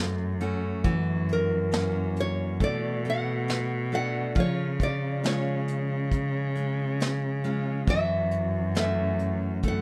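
Picked steel-string dreadnought arpeggios and a dark, boxy bowed cello bass with vibrato open this melancholic, intimate acoustic folk-pop ballad in F# minor at 68 BPM, joined at 0.4 seconds by an up-front vintage brush kit of hi-hat, tight kick and snare with a rolled-off top, and at 1.3 seconds by a small, fresh-stringed fingerpicked nylon-string guitar melody, in a light reverb as the chords move from F#7 through Bm7 and C# to F#m7.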